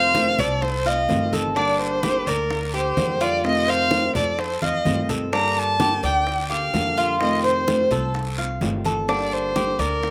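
Dry and open-air, this outdoor recording of Cuban son and guajira has a warm, danceable feel, with slapback echo on the violin, flamenco guitar, tres and bongos. Up front, the expressive bowed violin sings with vibrato and portamento over a thumb-plucked flamenco guitar, metallic double-stringed tres arpeggios and a woody pizzicato upright bass, while bright, thin-skinned congas and round, low-tuned bongos sit in the background alongside a raspy guiro. The harmony alternates between F7 and Gmadd9, and a drum fill arrives at 4.6 seconds in this excerpt from a longer piece.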